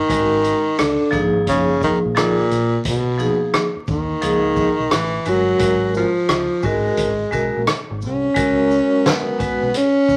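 Vinyl crackle and a moderate club reverb wrap this mellow, smoky jazz-hop fragment, which moves at 87 BPM with swung sixteenths over chords such as G#sus2, Bmaj7 and G#m9. Up front, a close-miked tenor saxophone carries the melody with a subtone and light vibrato, while a bright, ringing vibraphone with medium motor vibrato accompanies until 9.7 s. Beneath them sit a dark, round fingered electric bass and a vintage acoustic kit with a fat snare, punchy kick, hi-hat, rim click and shaker, all settling onto C#7sus4 at 8.4 s.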